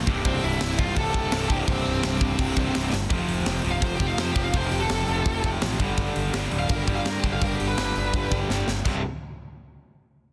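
The recording is dense and heavily limited in a modern way, with little reverb, and the polished, airy drum kit sits up front with the sound of a big room around it. It is a rowdy, upbeat punk rock excerpt from a longer piece, driving along at 167 BPM in a straight 4/4. Two bright, picked rhythm guitars, one overdriven and one distorted, play low riffs in the background, while a warm, fuzzed electric bass with a direct, amped tone holds down the bottom. The drums bring brilliant cymbals, a high-tuned snare and a tight kick, with fills at 2.9 and 8.5 seconds. A dark, high-gain lead guitar carries the melody and breaks into a solo at 3.1 seconds as the harmony moves from C to F, then to G, before settling on a C power chord at the close.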